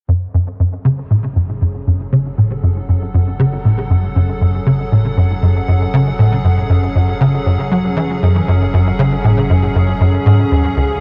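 A straight 4/4 pulse at 118 BPM drives this expansive, mysterious stretch of ambient space music in F# minor. A punchy, wave-folded sequencer bass riff sits up front with a filter sweep, chorus and tape echo, while a deep, round sub bass fades in underneath and an evolving, detuned wavetable pad fades in from 1.0 s with slow-attack sustained chords. The harmony moves from F#madd9 to C#sus2 at 10.3 s, and the whole excerpt is bathed in a huge ambient reverb and the worn, warbling pitch drift of old cassette tape.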